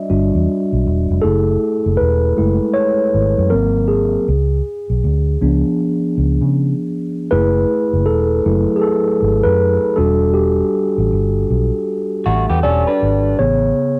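Sensual and relaxed, this neo-soul R&B excerpt from a longer piece sways on a swung sixteenth-note feel as a mellow, clean tine electric piano, colored by cassette tape, carries the lead through jazzy ninth chords and altered dominants. Up front beside it, a round, foam-muted fingered electric bass adds dark, amped weight through tube saturation. At 12.3 s, a slightly broken-up, lo-fi guitar through a small old amp slips in briefly with vibrato, all under light reverb and the homespun haze of a cassette home recording.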